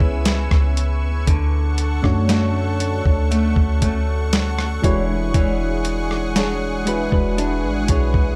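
A gritty, thumpy soul sampler-style drum kit sits up front in this dreamy, romantic contemporary R&B fragment, its hi-hat, kick, rim click and medium-tuned snare sounding compressed and re-recorded in a small room. Alongside it, a deep, round 808-style bass with a dark, decaying sine tone anchors the short passage, which is cut from a longer piece. Soft electric-piano-like synth keys carry the accompaniment with a mellow glow, coloured by chorus, phaser and tape echo, while a fingerpicked flamenco guitar plays arpeggios with audible finger squeak and its own tape echo. High above, a lush, thick unison pad of detuned sawtooth and square waves holds bright sustained chords with a slow attack, chorus and sidechain pumping. The harmony moves from C#m7 to Dmaj7 at 1.3 seconds and on to E13 at 4.8 seconds, all within a dry, echo-heavy mix.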